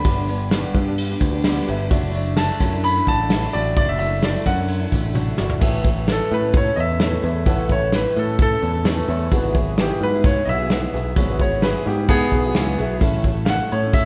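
A moderate reverb from a church or concert hall surrounds this short cut from a longer folk rock and heartland rock piece, giving it a hopeful, jangly glow at 130 BPM in a straight 4/4. A brilliant, up-front concert grand piano carries the melody, adding a brief fill at 1.2 seconds, while a dark, mellow second grand piano sits in the background as accompaniment. A picked steel-string acoustic guitar with an auditorium sound fills out the harmony, and a direct, up-front electric bass anchors the low end. A soft brush drum kit with a punchy kick and a rolled-off top drives the band, joined by a grainy, band-limited egg shaker far back in the mix. After a drum fill at 5.2 seconds, the music settles into A major at 5.6 seconds, where the bright piano takes a solo over chords moving from A to Eadd9/G# and back to A.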